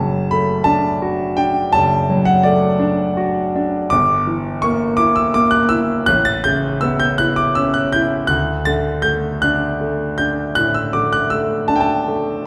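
A clear concert grand piano with deep bass and a natural tone plays alone through this tender, nostalgic romantic nocturne excerpt in D major, unfolding in a rubato 12/8 at 51-60 BPM in dotted quarters over D/F#, Em7b5/G and Aadd9 before settling on D, heard from further back in a wet recital hall with a 1.4 s reverb.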